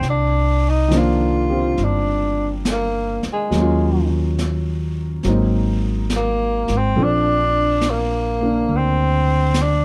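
Late-night and intimate, this short jazz ballad fragment swings gently in 4/4 as a breathy tenor saxophone carries the melody up front, its subtone voice softened by vibrato, scooped notes and a whispered attack. A clear grand piano, with its action noise audible, accompanies through a Cm11, Ebm7, Ab9 and Bbmaj9 progression, while a woody pizzicato upright bass sits close and a brushed drum kit plays snare and hi-hat from a distant, roomy position. The dark production keeps reverb minimal, and all four parts play together for the full 9.8 seconds.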